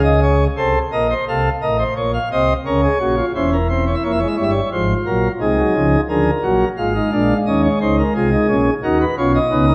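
A wet recital hall reverb surrounds a solo pipe organ with sparkling, light flute stops in a romantic voicing, sitting up front as it spans E1 to F5 in this serious, driving baroque-style four-part fugue in 4/4, a cut from a longer piece whose opening section gives way to a second at 3.4 seconds, with the harmony moving through Bbm, C7/E, Fm/Ab and Bb7 before landing on B.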